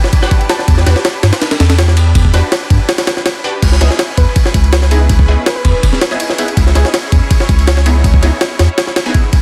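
A dense, heavily limited modern master with little room sound carries this raw, dark drum and bass cut in C# minor at 163 BPM, where a gritty, overdriven jungle sampler-style kit with a thumpy kick and high-tuned snare sits up front beside a deep, round dub sub bass entering at 0.7 seconds. Behind them a bright, biting symphonic string section holds lush bowed chords, while a bold, punchy orchestra-hit-like sawtooth stab, layered and detuned, cuts through with phaser and dub echo. A glassy, crystalline wavetable pluck adds very quiet melodic fragments, and after a short break ending at 3.6 seconds the harmony moves from Em7 to C#m7.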